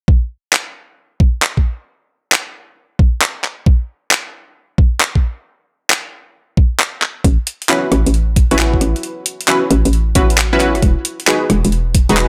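Sunny and soulful, this short cut from a longer two-step garage track rides a swung 4/4 groove with a light digital ambience around it. An up-front electronic kick, layered and tape-toned with a knocking punch, opens the passage, joined at 0.5 seconds by a gritty, compressed sampler-style breakbeat kit of handclaps, hi-hat and rim click. The drums carry the groove alone until 7.2 seconds, when a hollow, bouncy FM bass arrives with a fast attack and decaying notes, thickened by tube saturation. Half a second later a bright chord stab built from detuned sawtooth and square waves with a sub octave and a filter pluck enters, its punchy, decaying hits coloured by chorus and delay. The harmony moves from an A69 chord to Emaj9 near the end, lending the closing bars a warm, soulful lift.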